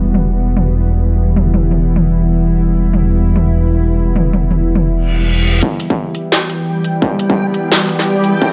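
A string-like drone and a deep, rumbling detuned saw bass open this tense, dark passage of half-time drum and bass, cut from a longer piece. The wave-folded drone sustains chords with vibrato, a noise layer and its own reverb, pumping against a sidechain, while the bass beats and rumbles underneath until it drops out at 5.6 seconds. An industrial kit with a clanging snare, smooth hats and filtered toms drives the groove up front, swung in a half-time feel. From 5.1 seconds a reverse cymbal and riser sit in the background, and as the music shifts into a build-up, a distorted electronic kick enters at 5.6 seconds. A reversed, granular texture swells in at 6.6 seconds, bright and dreamy, as the whole recording keeps a dry, gritty cassette-tape character with light reverb.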